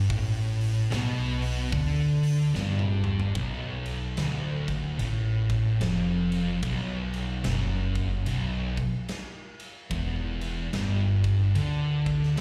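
Two dark, fuzz-distorted electric guitars, one up front with slapback echo and one in the background, open this heavy, hypnotic stoner and doom metal excerpt in B minor at a swung 73 BPM alongside a woody, overdriven pizzicato upright bass, while a big acoustic rock kit with a punchy kick and bright stone-room sound enters at 0.1 seconds and throws a fill from 2.5 seconds, as the riff moves from D5 to Bm at 3.4 seconds and on to E5, all heard live through a club PA with light reverb.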